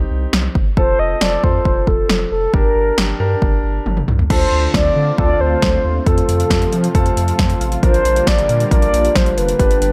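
Nocturnal and cool, this synth-pop excerpt moves at 136 BPM in a straight 4/4. A warm concert grand piano and a round, dark analog bass open together from the start, the piano holding the accompaniment in its middle register while the bass sits deep beneath it. At 0.3 seconds a deep house drum kit arrives up front, its deep kick, punchy snare and metallic hats roughened by overdrive and a small-room character, with crash, toms and a fill from 3.9 to 4.3 seconds. A mellow, horn-like sawtooth lead carries the melody from 0.8 seconds, its soft attack, vibrato and chorus giving it a rounded glow. At 4.3 seconds, as the harmony turns to Dm7, a lush, thick unison pad with a warbling, detuned vintage quality spreads sustained chords underneath, and light digital reverb surrounds the mix.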